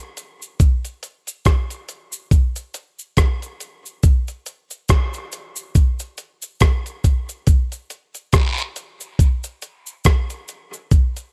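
A dry, close recording in a 1970s studio style carries this deep, meditative reggae groove with swung sixteenths, where a gritty, compressed sampler-style drum kit sits up front with a thumpy kick, hi-hat and rim click, joined throughout by softer, saturated acoustic cabasa and guiro, in a passage cut from a longer piece.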